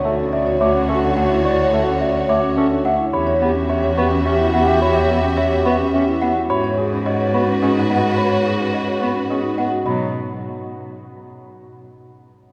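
A slightly out-of-tune celesta with a bell-like, delicate tone sits forward in this minimalist classical pattern music, playing arpeggios from 0.3 seconds alongside a marimba struck with soft mallets, whose rosewood bars sound woody and round. Set in 3/4 with a straight feel, the mood is both urgent and meditative. A chamber string section holds rich, focused bowed chords until 9.7 seconds, while a single cello carries the bass line with vibrato, and a bass clarinet adds vintage-toned accompaniment in the background. A dark, mellow baby grand piano plays the melody from the back of the mix with long sustain, and an alto flute with a pure, tongued tone and rolled-off highs traces a second line that stops at 9.6 seconds. A wet cathedral reverb surrounds the ensemble, placing it in a church or concert hall.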